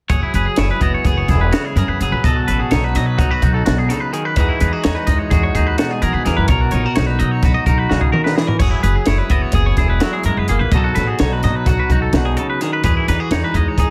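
From 0.1 seconds, an up-front, slightly broken-up electric guitar drenched in lush chorus and tape echo picks its accompaniment alongside a clean, twangy second guitar's bright arpeggios, a woody, thumpy pizzicato upright bass on gut strings and a compact cocktail kit with a high-tuned snare and punchy kick. This wistful, intricate stretch of math rock and midwest emo moves in 9/8 at 255 BPM counted in eighths, in B major, cycling through F#9sus4, B7, Emaj9 and Bmaj9. A drum fill at 7.9 seconds leads back into the progression, and the whole passage sits in an echo-heavy studio reverb.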